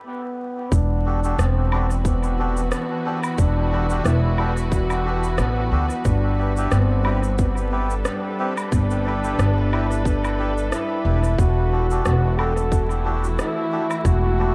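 Ambient dub with a spacious, meditative mood, cut from a longer piece: a mellow trombone with light vibrato opens the melody alone at 0.1 seconds, and at 0.7 seconds an Em11 chord brings in veiled, con sordino bowed strings, a woody pizzicato upright bass up front, a tight electronic kick, and echoing cabasa, rim click and woodblock, while a reedy, breathy melodica adds dub-echoed stabs from 1.1 seconds, all set in light small-room ambience over vinyl crackle.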